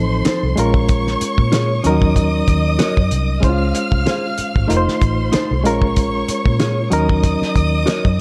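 A bowed violin section with soft vibrato, a barky, reedy electric piano with fast tremolo and light overdrive, and a dark, round, foam-muted fingered bass all sound together from the opening moment of this short cut from a lush, romantic 1970s-style soul piece. A cloth-damped drum kit joins at 0.2 seconds, its fat snare, tight kick and hi-hat sitting up front with a rolled-off top in a tight, pumping booth. A clean, compressed electric guitar enters at 0.3 seconds with a mellow fingered riff in its middle register. The electric piano carries the accompaniment through its built-in speakers, while the symphonic strings float above as a smooth, expressive second line touched with tape echo. At 95 BPM in 4/4 with a gentle sixteenth-note swing, the harmony moves through F7, Bbm7, Ebm7 and Dbmaj7 before circling back, all wrapped in a small, intimate room and a warm mood.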